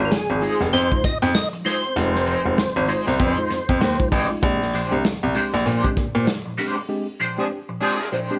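Funk at 97 BPM in 4/4, with a 16th-note swing and a funky, hypnotic mood, this short cut from a longer piece sits in F dorian and moves from Fm7 to Bb13 at 4.4 seconds. A percussive tonewheel organ carries the melody through the opening 4.1 seconds, its round, mellow tone colored by chorus vibrato and a slow rotary speaker. Beneath it, an electric guitar at the edge of break-up plays accompaniment through wah and tremolo with a dark, picked sound, while a worn, slightly out-of-tune tine electric piano adds stabs. A clear grand piano takes the bass part up front until 6.2 seconds, and a crunchy breakbeat kit of kick, snare and hi-hat brings a gritty, saturated groove with a rolled-off top. Near the end a horn section, distant and roomy with light vibrato, enters at 7.4 seconds on a second line during a band accent, all within light reverb and small room ambience.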